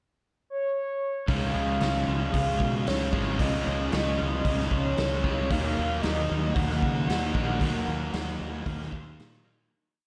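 A mellow, horn-like synth lead opens this short shoegaze and dream pop piece at 0.5 s. Its detuned sawtooth tone is round and warbling, with vibrato, chorus and analog delay, as it sings a motif-based melody that begins over the pickup bar. At 1.3 s the full band arrives in a straight 4/4 at 114 BPM in Db major, moving from Dbadd9 to Ebmadd9. A thick fuzz guitar strums distorted chords with whammy-bar dips through a lush chorus. Beneath it, an overdriven semi-hollow guitar rings chords in the background with reverse reverb, and a very quiet, compressed twelve-string electric guitar picks clean arpeggios. A round, overdriven fingered bass drives eighth notes, and a raw garage drum kit of punchy kick, medium-tuned snare and hi-hat lays down a gritty, saturated big rock groove with a rolled-off top. Hazy and dreamy, the mix is soaked in a moderate hall reverb, and the piece fades out from 7.6 s.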